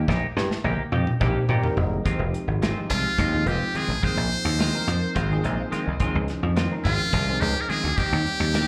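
Slick and nocturnal, this electric jazz fusion excerpt moves in a straight 7/8, with a dark, smooth drum kit opening on a fill while a punchy, foam-muted thumbed slap bass sits up front. A bell-like tine electric piano with ensemble chorus and slapback echo adds fills, and a twangy, compressed clean guitar with analog chorus and slapback echo plays stabs. At 2.9 seconds a brilliant, buzzy trumpet in a metal mute takes the lead with scooped notes and light vibrato, all heard as a live club gig through the venue's PA.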